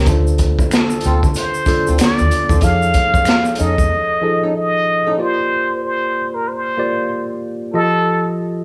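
A worn, slightly out-of-tune tine electric piano with a phaser opens this relaxed R&B and neo-soul excerpt in Bb major, heard together with a bright, fingerpicked flamenco guitar playing a second line, complete with finger squeak, and a dark, round, foam-muted vintage electric bass. Moments in, a saturated, gritty breakbeat kit sits up front with a tight kick, medium-tuned snare and hi-hat, its top rolled off, while a quiet tube shaker, finger snaps and group handclap add small-room percussion. The groove moves at 94 BPM in 4/4 with a lazy sixteenth-note swing over Dm7 and F7alt. At 0.7 seconds a trumpet with a plunger mute takes the solo melody, breathy and whispered with a soft attack, vibrato and wah-wah inflections in an intimate jazz style. The drums, bass and percussion drop out at 3.9 seconds for a break, the guitar stops at 5.2 seconds, and the trumpet and electric piano carry the closing Bb69 and F7 changes. 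The band sounds as if playing live in one room, wrapped in a moderate large-studio reverb that gives the whole a cosy, unhurried glow.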